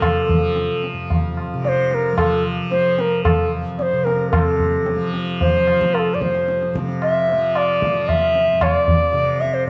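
A dark, warm production places the players in a moderate recital hall, its reverb framing a radiant, devotional fragment of Hindustani classical music in raga bilaval on F, tuned to A4 = 441 Hz and moving at 112 BPM in a straight 4/4. Up front, a reedy bamboo bansuri sings the melody with a pure, straight, tongued tone, while a softly plucked tanpura drone buzzes and shimmers underneath and a low-tuned, ringing tabla with a vintage, band-limited character keeps time. All three play throughout the 9.7 seconds, with the music moving into a new section at 4.3 seconds.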